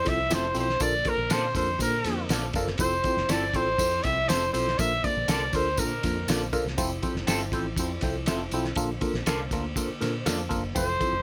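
Joyful and warm, this 11-second cut from a longer uptempo 1960s-style soul piece at 121 BPM sways between Fmaj7 and Bbmaj7 as an up-front trumpet with scooped notes carries the melody until 6.3 seconds and briefly returns at 10.8 seconds, shadowed by a barely audible soft-mallet vibraphone, over a worn, slightly out-of-tune tine electric piano with phaser, a flute-like tonewheel organ on a slow rotary speaker, a round, foam-muted bass with tube saturation, a muffled, thuddy cloth-damped drum kit with a fat snare and dark cymbals, a jingly tambourine, and twangy, slightly broken-up guitar stabs, all in light reverb.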